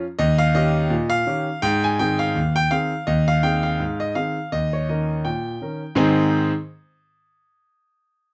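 Playful and jaunty, this short cut from a longer ragtime piece features a solo concert grand piano in Ab major at 83 BPM in 2/4, with a light swing on the sixteenths. The piano sounds natural and up front with a deep bass, spans Eb2 to Ab5, and moves between Eb7 and Ab harmonies before a new passage begins on Ab at 6.0 seconds, sounding until 6.5 seconds. Close, detailed microphones and light reverb capture the instrument clearly.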